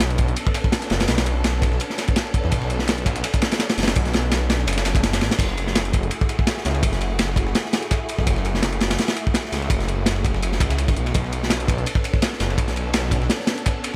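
A dry, raw drum and bass excerpt at 167 BPM in F# minor, where a crunchy, saturated breakbeat kit with dark cymbals and a tight kick sits up front beside a thick, beating detuned saw bass, while a tape-dusted sampler kit of filtered hi-hat and snare and a silky, chorused string machine holding Bm9 and F#m9 chords hover atmospherically in the background.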